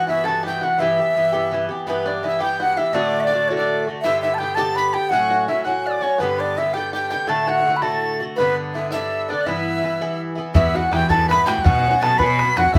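Celtic folk jig in E dorian at 110 BPM in 6/8, spirited, dark and lively, with an airy wooden flute carrying the melody up front with vibrato and a crisp attack, while a chiffy, breathy tin whistle and a twangy, fingerpicked banjo add second lines above and beneath it. A mellow, metallic double-strung bouzouki picks the accompaniment close in the mix. At 10.6 s a biting, earthy bowed cello takes up the bass and a tight, damped bodhran joins, all in a lively, reverberant room sound.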